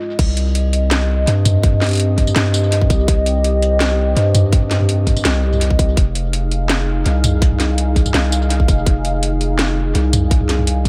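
A moderate spring reverb and an echo-heavy mix give this cinematic, dark half-time drum and bass piece, cut from a longer track, a shadowy sense of space at 166 BPM in C minor. A moody analog pad of detuned sawtooth and triangle tones with a sub octave holds slow-attack sustained chords, treated with chorus, phaser and sidechain pumping, and it sounds briefly alone at the start before the drop arrives at 0.2 seconds. From there a long, deep sine 808-style bass with a fast attack and decaying tail sits up front, moving from Cm to Fm7 at 6.0 seconds. A tight electronic kick, layered and also up front, anchors the groove. Around it, a produced drum kit re-recorded in a small room brings a cracking snare, metallic hats, crash cymbal, tambourine and toms, all carried on tape echo.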